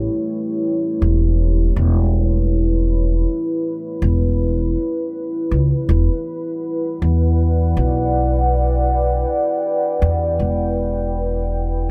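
A woody, pizzicato upright bass sits up front in this hazy, deep ambient dub fragment, its dark acoustic tone carrying the low end across the whole 11.9 seconds. Alongside it, also up front, a moody pad of detuned sawtooth and sine layers with a sub octave holds sustained chords, moving from A7 to Em7 at 5.9 seconds, softened by chorus and its own reverb. A moderate spring reverb and small-room ambience give the recording a slightly swung, murky atmosphere.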